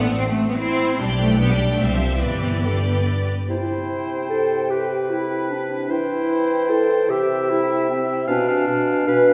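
Violas with expressive vibrato, a clear, up-front cello section and dark double basses with portamento open this graceful, lively fragment of a quick classical-period orchestral movement in triple time with a rubato feel; rich, focused violins take the melody over intimate sul tasto second violins from 1.0 s, before a close-miked oboe, a present clarinet, a pure silver flute and a mellow, up-front bassoon carry the second passage from 3.5 s in a wet concert-hall reverb with a faint mains hum.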